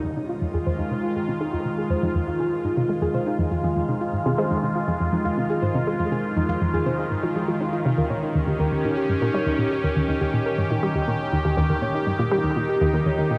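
Drenched in a vast cathedral reverb, this excerpt of ambient, sequencer-driven space music in F minor moves at 121 BPM with an expansive, cosmic mood, as a swirling, detuned analog pad holds phased, shimmering chords up front while a nasal, wave-folded analog pluck plays a bright riff and a soft, dark, round pluck traces gentle arpeggios from 0.2 seconds, the harmony shifting from Fm7 to Eb7 at 8.0 seconds.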